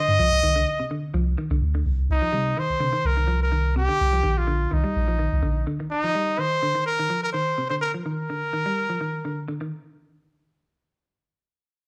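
A lightly swung sixteenth-note groove in 4/4 drives this intense, defiant afrobeat passage at 126 BPM in C minor, cut from a longer piece. A clear, up-front trumpet carries the solo melody in a pop style, singing with vibrato in a range between Eb4 and Eb5 through nearly the whole passage. Beneath it, a clean, picked electric guitar plays warm arpeggios in a low register, while a punchy sub bass adds a deep, mellow sine tone with a quick pitch-drop attack and long sustain until it stops at 5.6 seconds. The harmony starts on Cmadd9 and shifts to Cm9 at 2.1 seconds, opening into a longer second section. The band sounds as if it is playing live together in one room, with light reverb.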